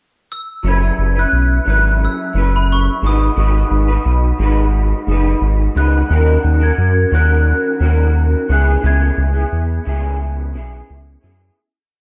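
A bell-like glockenspiel struck with brass mallets opens this short, mellow and lonely bedroom-pop piece at 0.3 s, tracing a vintage, chorus-tinged motif over a rough home-demo sound with light reverb. At 0.6 s a slightly broken-up electric guitar through a small old amp enters with picked, driven strumming in jazz chord shapes, colored by chorus and vibrato, while a deep, round analog bass sits up front playing a melodic line. The straight 88 BPM groove in C# dorian, tuned to A4 = 437 Hz, moves from F#7sus4 through G#m7 and D#m7 to C#m7 before fading out from 8.8 s.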